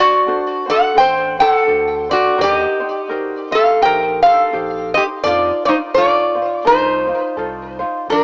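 A metal-body resonator slide guitar carries the melody up front, its bright, metallic, nasal tone shaped by fingerpicks and slide and colored by cassette tape and tape echo. This short Hawaiian excerpt drifts along in a dreamy, relaxed mood over a gently swung 4/4 feel. Underneath, a light, fingerpicked acoustic ukulele supplies warm accompaniment, sitting well back behind the lead. At 1.0 s a pure sine sub bass enters, deep, smooth and dark, adding a clean, sustained foundation felt more than heard. The harmony moves from D7 to Eb6 at 2.4 s and on to F7 at 5.2 s. A moderate spring reverb and the small-speaker character of a home cassette recording give the whole a hazy, intimate quality.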